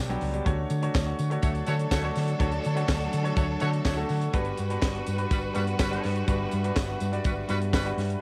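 A tight, dry funk drum kit sits up front with a high-tuned snare, tight kick, hi-hat and handclaps, driving this celebratory, joyful disco excerpt alongside a dark, round, hollow-body bass and a jingly tambourine tucked in the background. A clear, intimate baby grand piano with audible action noise plays a fill from 3.6 to 4.3 seconds as the harmony moves from Dmaj7 to Gmaj7. Around it, a focused bowed string section with vibrato, tight vintage horn stabs carrying tape echo, a very quiet slightly broken-up picked electric guitar and a soft, hollow chamber organ with flute stops and chiff all sit in a small room with light reverb and the character of a home cassette recording.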